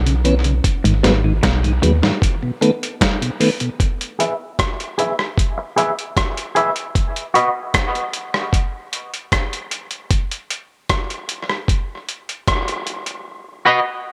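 Dub reggae at 76 BPM with a deep, spacious mood, opening on a hollow-bodied guitar riff soaked in tape echo over a round, soft sub bass and a mellow tonewheel organ turning on a slow rotary speaker, while a gritty, overdriven sampler-style drum kit with a thumpy kick carries on alone into a filtered, twangy, slightly broken-up electric guitar with tremolo from 4.2 s to 7.5 s, all set in moderate spring reverb.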